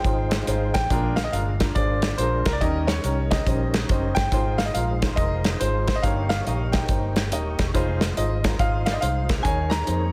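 Reverent yet jubilant, this uptempo gospel excerpt swings at 140 BPM in 4/4, with a bright, brilliant grand piano carrying the melody over a natural-toned baby grand that supplies the accompaniment. Behind them a smooth, clean tonewheel organ holds sustained chords through a fast rotary speaker and chorus vibrato, while a dark, round, foam-muted electric bass and a punchy, up-front acoustic drum kit of kick, snare and hi-hat drive the groove. The changes move from Fm7 through Bb7, Eb7 and Ab6 before settling on Eb7sus4 at 9.5 seconds, all set in light reverb under a dense, heavily limited modern master.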